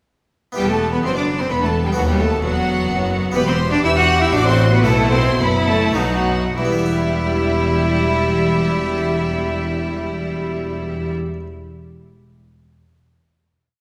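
A bright, intense solo cello with an airy bow carries the tune at the octave alongside a distant, expressive violin section in this short, stormy, dramatic baroque-style concerto movement in triple time. Rich chamber violins double the melody at the octave in the background, and violas add focused, sustained chords in the rhythm of the tune. A cello section with soft attack and portamento plays a walking bass that a close double bass section doubles, while a plucked Italian-style harpsichord rolls chords beneath. The ritornello slows from 2.7 seconds and settles on a final chord from 6.6 seconds, heard in a wet concert hall.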